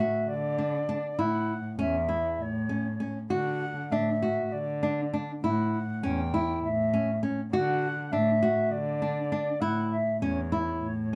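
Moving in a straight 7/8 at 199 BPM in eighths, this restless, shimmering piece of contemporary chamber music in D major pairs fingerpicked flamenco guitar arpeggios, up front with audible finger squeak, and a dark, veiled con sordino cello bowing the bass line with vibrato, beneath a pure, wooden baroque flute melody that sounds distant and unsteady with a soft attack, all set in a moderate studio reverb across this 11.2-second excerpt that swings between D and A chords.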